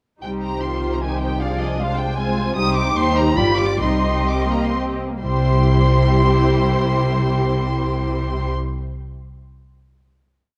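At 0.2 s a muted string orchestra enters in a quick, stormy classical-period movement in triple time: a veiled violin section carries the melody over a second violin line and a distant, lush viola section that plays chords in the rhythm of the tune and answers at phrase ends. Cellos hold a sustained bass with passing notes, doubled by double basses with a soft attack, and every section is bowed con sordino with vibrato and a dark tone, the violins, cellos and basses keeping a smooth top. The urgent music slows from 2.0 s and arrives on a closing chord at 5.2 s, set in a moderate scoring stage reverb.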